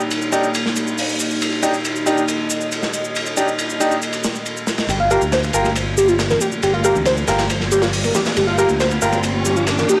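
A crunchy breakbeat kit with a punchy kick, medium-tuned snare and dark cymbals drives this raw, funky breaks excerpt from its opening moments, backed by a layered electronic shaker and a deep, moody ambient pad that pumps under sidechain, while brilliant baby grand piano stabs sound through tape echo. At 4.9 s a build-up begins: a screaming, guitar-like overdriven synth lead riff with phaser and tube saturation arrives alongside a direct fingered electric bass, high-tuned congas ring in the background soon after, and an electronic riser joins at 6.5 s. The recording carries a gritty cassette-tape character and a moderate plate reverb.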